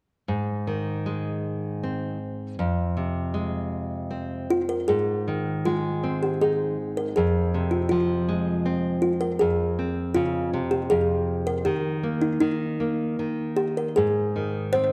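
A fingerpicked nylon-string guitar opens at 0.3 s, dark and full-bodied, sitting up front as it lays down a tender accompaniment in Ab major, moving between Ab and Fm. This gentle children's piece drifts in a loose rubato 3/4 around 79 BPM, tuned slightly high to A4 = 441 Hz. At 4.5 s a kalimba enters with the melody, its short, thumb-plucked notes sounding woody and hollow, each one trailed by a slapback echo. Beneath it the harmony passes through Ab and Fm, then a rootless Bbm9 over F and an open Eb5, before settling back on Ab near 14.0 s. A moderate concert-hall reverb and a dusky, cosy production give this fragment of a longer piece a gentle, tender glow.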